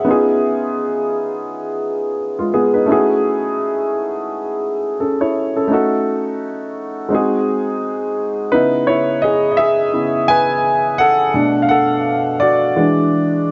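Bathed in a moderate echo-chamber reverb with softened, rolled-off highs, this bittersweet, smooth soul excerpt features a warm, worn baby grand piano playing solo up front with long sustain and a lightly swung sixteenth-note feel, moving from C#7 through F#m7 and G#7 before a second section at 8.5 s opens on C#m9 and arrives on E9 at 12.8 s.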